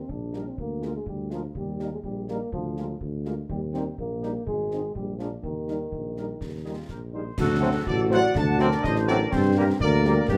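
A festive, rousing military-style march for wind band in 2/4 at 124 BPM in Eb major, where a mellow, distant trumpet section carries the melody over an up-front tuba bass, a warm solo euphonium line, background French horns and close concert bass drum, snare and dark clash cymbals, before a pure, vibrato-tinged flute ensemble joins at 6.6 s and a tight trombone section adds smooth sustained chords from 7.6 s as the harmony turns toward D7 and Gm, all in a roomy large-studio reverb.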